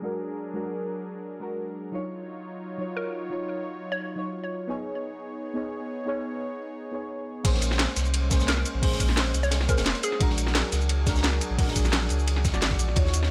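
Liquid drum and bass with a soulful, rolling mood, opening on a soft, detuned chord stab with chorus, phaser and tape echo over a smooth, slow-attack analog pad as a filter sweep builds, with a hollow, bouncy square pluck briefly carrying the melody from 3.0 seconds, until the drop at 7.4 seconds brings in a thick, saturated sub bass, a gritty, thumpy electronic kick, an up-front electronic kit with cracking snare and metallic hats, and a crunchy acoustic breakbeat kit with a high-tuned snare and dark, rolled-off cymbals.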